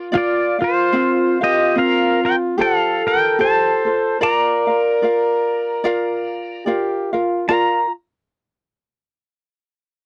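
Hawaiian music with a relaxed, languid swing, cut from a longer piece, in which a bright, twangy electric pedal steel guitar carries the melody up front, played with fingerpicks and slide and shaped by volume swells. A mellow flugelhorn adds a jazz-style second line beneath it, while a light, fingerpicked acoustic ukulele sits close in the accompaniment, all three playing throughout the 7.9 seconds. The sound is dry and close, like a 1970s studio recording, with the harmony moving from Bb through Fsus4 and Fadd9 before settling back on Bb.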